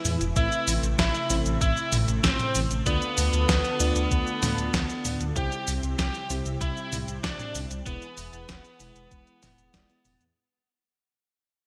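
Synthwave in a moody, nostalgic vein, cut from a longer piece and fading out from 3.7 seconds, with a biting, overdriven lead guitar up front carrying the melody through digital delay while an airy, dreamy lead with chorus and portamento traces a second line above it. Behind them, a silky analog string pad with sidechain pumping holds chords moving from Amadd9 to Dm, C and E, and a chorused, phased FM electric piano adds mellow stabs. A dark, rumbling detuned saw bass and a clean 12-bit drum machine with a fat, up-front snare, cabasa, hi-hat and toms in gated reverb ride over a thumpy electronic kick, all set in a lush hall of bright 1980s-style digital production.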